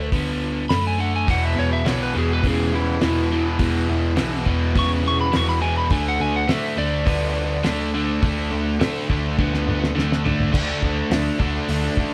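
Classic rock at a driving, sunny 104 BPM, this excerpt from a longer piece is played live in one room with moderate studio reverb. A slightly broken-up, compressed lead guitar sings its melody over a picked, up-front overdriven guitar riff, a bright, double-tracked fuzz guitar riff that joins at 1.3 s, and a round, hollow-body short-scale bass. Beneath them, a dry, cloth-damped drum kit with a fat snare, tight kick and dark cymbals plays a fill from 9.4 s, over chords moving from D to E5 and then to D5.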